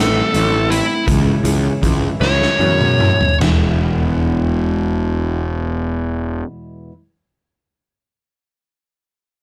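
Set in a straight-feeling 6/8 with a slow, heavy dotted-quarter pulse, this fragment of a quiet-loud alternative rock piece slows down through its opening stretch, carrying a cathartic, anthemic weight. A dark, overdriven lead electric guitar takes a picked solo up front over Am and C#m chords, while a raw garage drum kit with a punchy kick, a medium-tuned snare, hi-hat, toms and china cymbal sounds gritty and saturated, its top rolled off inside a bright stone room. The drums play a fill from 2.2 seconds, and at 3.4 seconds the lead falls away as the harmony settles onto E. A growly, fuzz-drenched electric bass sits prominently in the mix until 6.4 seconds, and a full-bodied jumbo steel-string acoustic guitar with fresh strings fingerpicks arpeggios in the background, ringing on until 6.9 seconds. A light reverb lends the raw sound a touch of space.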